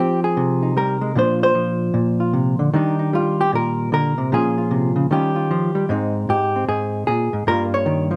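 Set in light reverb, this short passage cut from a longer solo jazz piece features a single up-front, dark, clean and compressed hollow-body electric jazz guitar, played with the fingers and ranging from G2 to Db5, swinging at 152 BPM in 4/4 through Eb major changes such as Fm7, Ebmaj7 and Abmaj7 before a Gm7b5 near 7.5 seconds, with a sophisticated, playful mood.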